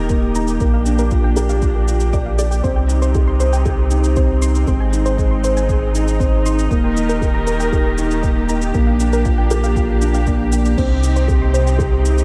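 A dreamy mix soaked in lush hall reverb frames this cinematic, hypnotic piano and strings electronica, cut from a longer piece. A felt-muted upright piano plays a mellow, boxy riff through delay and shimmer reverb over sustained chords from a distant, woody symphonic string section, while a round sine sub bass sits up front with sidechain pumping. A soft, detuned pluck with chorus and delay plays arpeggios in the background, and a deep electronic kick drum drives alongside an electronic shaker and crash cymbal as the harmony cycles through Eb, Bb6, Cm and Ab.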